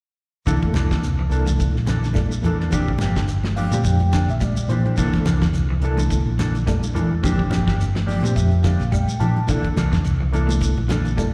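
A round, punchy hollow-body fingered bass sits up front in this funky, hypnotic afrobeat excerpt at 106 BPM in 4/4, which has a swung sixteenth-note feel in C mixolydian and moves between C13 and Bb6 chords. A damped 70s drum kit with a fat snare, tight kick and rolled-off top holds the groove on hi-hat, kick and snare, while high-tuned, hard-handed congas sit in the background and a grainy shekere adds a mellow shimmer. A reedy electric piano with fast tremolo and slapback echo plays accompaniment through its built-in speakers, stepping out with fills at 3.3 and 7.8 seconds. Two dark electric guitars fill out the middle: one, slightly broken-up and picked, plays low arpeggios through a phaser in the background, while a clean, fingered guitar adds stabs colored by analog chorus and slapback echo. The whole band sounds like a live gig heard through the venue's PA, wrapped in recital hall reverb.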